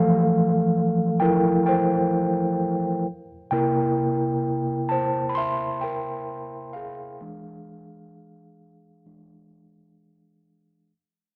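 Swung sixteenths at a slow 65 BPM in 4/4 carry this romantic, dreamy R&B fragment, cut from a longer piece and tuned to A4 = 443 Hz, where a mellow, clean tine electric piano plays alone and up front through its built-in speakers, moving from Fmaj9 to C7 at 3.1 seconds and E7b9 at 7.2 seconds, wrapped in light digital reverb and a gritty, transformer-saturated hardware sound as it fades out across its full 10.9 seconds.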